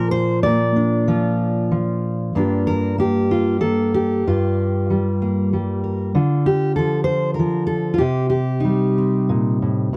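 Wistful and melancholic, this short passage cut from a longer folk piece features a lone fingerpicked steel-string acoustic guitar in a loose, rubato three-four. The jumbo guitar sounds full-bodied and up front in a dry, close studio setting with a 1970s character, ranging from G2 up to D5. Its harmony moves from Bb to Gm7 at 2.4 seconds, then to Dm at 6.2 seconds and Cm at 8.0 seconds.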